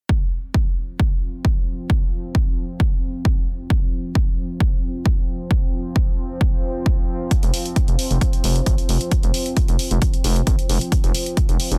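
A dense, heavily limited modern master with little room sound carries this intense, dark excerpt of driving peak-time techno at 133 BPM in straight 4/4, built on an F5 chord. A heavy, layered, overdriven electronic kick sits up front from the start, while a deep, moody pad of detuned unison sawtooths and a sub octave drones beneath it, evolving under chorus, its own reverb and sidechain pumping. An analog, tape-warm electronic hi-hat arrives at 7.3 seconds, and a gritty, aggressive synth bass with resonant oscillator-sync bite and saturated edges joins up front at 7.4 seconds, also breathing with sidechain pumping.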